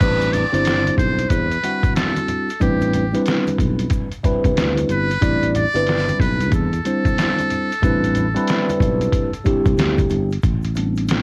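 A light reverb and the soft haze of a home cassette recording frame this short, cool and nocturnal jazz-hop cut, which moves at 92 BPM in 4/4 with a 16th-note swing and rests on a single Am11 chord in A minor. Up front, a sampler-style trip hop kit sounds compressed, pitched down and gritty, with a thumpy kick, a medium-tuned snare, hi-hat and crash cymbal. A tine electric piano, clean and coloured by a combo amp, phaser and tape, carries the accompaniment alongside a growly, punchy fretless electric bass that sustains low in its range with a direct, amped tone. Over them a solo trumpet with a metal mute plays the melody in a jazz style, its tone brilliant yet thin, buzzy and breathy, with a soft attack, and it falls away at 9.8 seconds while the band continues to 11.2 seconds. Bright, close and dry egg shaker and hard-handed congas sit in the background, adding acoustic detail beneath the groove.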